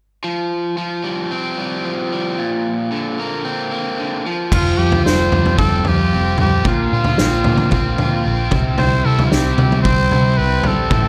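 A raspy, growling trumpet with vibrato and scooped notes carries the melody from 4.5 s in this upbeat, jangly indie rock excerpt, joined there by a biting overdriven guitar with subtle chorus in the background, a dark, round hollow-body short-scale bass and a distant, roomy drum kit with a punchy kick, after a bright, compressed overdriven electric guitar riff plays alone from 0.2 s, in a dry, echo-heavy mix with analog delay on the guitars and trumpet and a faint mains hum.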